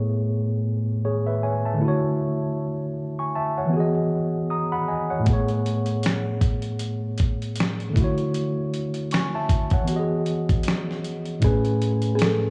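Dreamy and nostalgic, this short lo-fi hip hop excerpt in A major moves at 78 BPM in 4/4 with a swung sixteenth-note feel. A worn, slightly out-of-tune tine electric piano carries the accompaniment from the start, lightly overdriven and heard up front through a cassette-tape haze and a low-pass filter, cycling through lush Amaj9, Dmaj9 and Emaj9 chords. At 5.3 seconds a dusty, sampler-style soul drum kit arrives with hi-hat, a thumpy kick and a medium-tuned snare, its gritty, compressed sound re-recorded in a small room and placed up front. Near the close, at 11.4 seconds, a buzzing kalimba slips in with a brief, woody melody plucked with a thumbnail, its dark, short notes softened by a low-pass filter and trailed by tape echo. Light reverb and a cassette-tape grain lend the whole recording an intimate, lived-in studio ambience.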